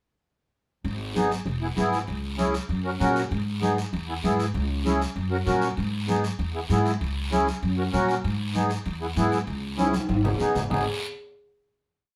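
A woody, thumpy pizzicato upright bass opens this short, fiery cumbia at 0.8 s with its cumbia figure, together with bright off-beat congas and ringing, distant timbales with bell sitting in the background, while a raspy guiro scrapes a long-short-short pattern close by from 0.9 s. At 1.2 s a reedy, sweet accordion with light tremolo tuning comes up front with smooth, rhythmic triad chords, circling a passionate minor progression as the band plays live together in a moderate studio room. A drum fill from 9.8 s leads into a final chord at 10.7 s.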